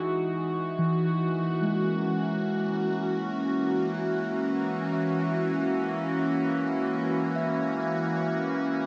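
In free time, this serene ambient passage, cut from a longer piece, rests on a single F#7 chord in F# mixolydian, carried by a bright, morphing wavetable pad of detuned sine tones with slow attack and long release, sitting up front with chorus and its own reverb. From 0.8 s, muted, felt-like synth keys add soft, dark arpeggios with quick, decaying notes, a noise layer, chorus and a diffuse ambient delay. Everything hangs in a vast, echoing cathedral space whose 6.1-second reverb tail gives the piece a calm, enveloping glow.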